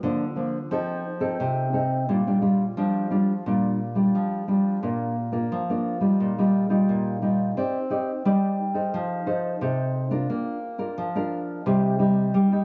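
Festive and lively, this short samba excerpt features a solo nylon-string guitar, dark and full-bodied, thumb-plucked in a classical manner and placed up front, moving from a rootless Gm7 through F7 and Bb6 into a second passage at 4.8 seconds that wanders through Ebadd9/Bb, Cmadd9 and F7 before settling on Bb and Cm, all heard through a moderate spring reverb with the character of cassette tape and the ambience of a small room.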